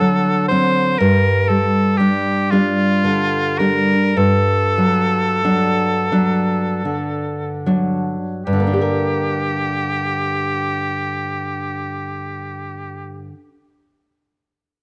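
An oboe and a fingerpicked nylon-string guitar begin together in an elegiac, solemn romantic duo in G minor, moving in a rubato 6/8 at 24-41 BPM in dotted quarters and slowing through the first 8.5 seconds as the harmony passes from D7 toward D/G. The oboe sings a clear, soft-attacked classical melody with vibrato, while the full-bodied guitar supplies deep accompaniment, its finger squeaks audible, before a new passage settles on G minor at 8.5 seconds. Both parts sit up front with a cassette-tape coloring in a small room with light reverb, giving this fragment of a longer piece an intimate home-recorded feel.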